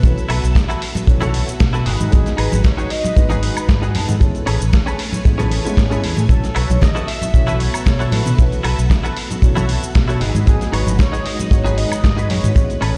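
A tight, dry kick drum sits up front in this sunny, feel-good nu-disco excerpt at 115 BPM with a light swing, joined by a bright fingered electric bass with an envelope filter and sidechain pumping, a gritty sampler-style kit of hi-hat, shaker, snare and woodblock, congas played with hard hands in the background, a twangy clean electric guitar riff entering at 0.3 seconds, a dark, boxy baby grand piano with audible action noise, a lush string machine holding B7sus4, G#m7 and Amaj9 chords, and a thick, detuned unison lead melody with chorus and tape echo, heard through a big sound system in a bare stone room.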